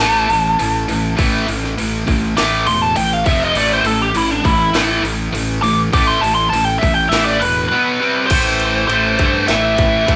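A biting, overdriven lead guitar sits up front with a bright solo from the start until 8.3 seconds, riding over a heavy, driving hard rock groove at 101 BPM in A minor. Beneath it, a double-tracked high-gain distorted guitar grinds out the riff over power-chord changes, joined by a growly, punchy fuzz bass and a tight, cracking garage drum kit with a tape-warm, layered, produced sound. The band plays live in one room with light reverb, and the piece shifts to a new section on an A minor chord at 8.3 seconds before this short cut ends.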